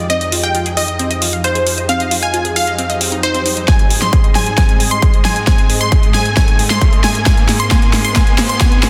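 Over a straight 4/4 pulse, sidechain-pumped hi-hats and a huge, overdriven snare from a big-room dance kit drive a euphoric, emotional uplifting trance build-up that moves from Fm7 to Ab. A background riser enters at 0.8 s, and a punchy kick arrives up front at 3.7 s. A bright, phased unison pluck carries the melody, backed by a very quiet, mellow plucky unison lead on a second line, a full-bodied detuned pluck with dub echo playing arpeggios, and a silky, chorused analog string pad holding sustained chords, all within lush hall reverb and a dense, heavily limited master.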